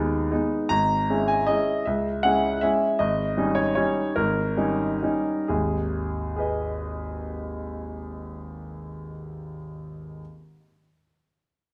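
A clear grand piano plays alone in this brief classical waltz fragment, its smooth, vintage tone carrying a long sustain and sitting up front in the sound. The mood is wistful and elegant, set in G# minor with the instrument tuned to A4 = 439 Hz, and the waltz moves in 3/4 with a rubato feel somewhere between 120 and 169 BPM. The piano spans G#1 to B5 as the harmony moves from G#m through C#m over G# and D#7 over G# before settling back on G#m. The tempo slows from 2.4 to 5.5 seconds, where a new section begins and runs to 8.1 seconds. A wet recital hall reverb surrounds the playing, lending the roughly ten-second passage a resonant space.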